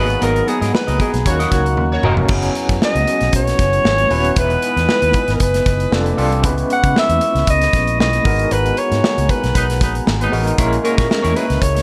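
Nocturnal and bittersweet, this polished 1980s jazz-funk pop excerpt puts a breathy, mellow alto saxophone melody up front over a barky, overdriven tine electric piano with tremolo and subtle chorus, a glassy harmonica holding ethereal chords in the background, and a round, punchy fingered bass. A tight-kicked studio drum kit with gated reverb sits close, with band accents and a drum fill at 1.8 seconds, while a distant, roomy horn section adds a second line and a clean semi-hollow guitar plays its riff only at the start and again from 10.6 seconds. The harmony moves from G#m9 through Emaj7 to A#m7b5 in a light, small-room ambience.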